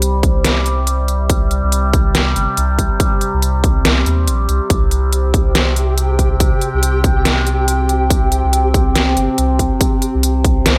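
A resonant, wave-folded drone with moving overtones opens this short cut from a deep dubstep piece, holding a C5 chord through chorus, phaser and reverb. A round, soft sub bass and an up-front electronic kit of deep snare and crisp hats play alongside it at 141 BPM in a swung half-time feel, and a punchy electronic kick joins at 0.2 seconds. From 5.3 seconds a grainy, flickering, detuned texture sits in the background on a single G with its own reverb, keeping the mood meditative yet heavy in a light room.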